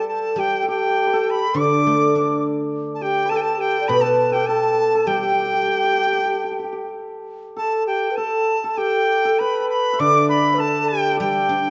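Set in a moderate concert hall reverb, this graceful, pastoral Chinese traditional chamber piece flows in a free, rubato 4/4, cut from a longer work. A buzzing, reedy dizi carries the melody with vibrato and a crisp attack, while a shimmering hammered dulcimer and an airy, end-blown xiao, also with vibrato, weave second lines beneath it. An up-front, silvery guzheng plucked with fingerpicks rings out the low accompaniment, and the music moves into a new section at 7.6 seconds before the xiao drops out at 11.5 seconds.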